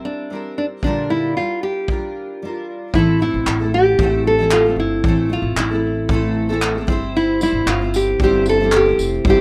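This acoustic pop excerpt drifts along at 114 BPM in a reflective, wistful mood. An up-front, fingerpicked nylon-string guitar with delay carries the melody over a full-bodied, double-tracked steel-string acoustic guitar whose picking brings audible finger squeak. A loose, gritty drum kit of handclaps, punchy kick and tambourine enters at 0.8 s, and a woody, thumpy pizzicato upright bass joins at 2.9 s as the chords move from Am to C, all in a dry, rough home-demo sound.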